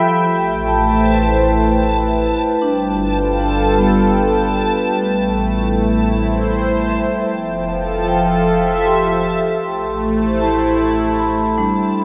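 A warm, detuned analog pad opens this reflective ambient piece, holding sustained chords with a slow attack and a nasal, sawtooth edge thickened by chorus, placed up front in the mix. Alongside it from the first moment, a vibraphone struck with medium hard mallets plays arpeggios in a dark, metallic, ringing tone, its notes trailing into a diffuse ambient delay. In the upper register, a reversed, swelling texture adds a bright, granular shimmer with a soft attack and long release, bathed in its own reverb. At 0.3 seconds a round, deep analog bass enters, its evolving tone blending sawtooth, sine and ring modulation, and both the bass and the swelling texture fade out gradually over the rest of the section. Set in a gently unhurried 3/4, the harmony moves from Am9 through G7, back to Am9, then to Fmaj7 before settling again on Am9. The whole dreamy mix is soaked in a cathedral-like reverb, giving this fragment of a longer piece a spacious, suspended feel.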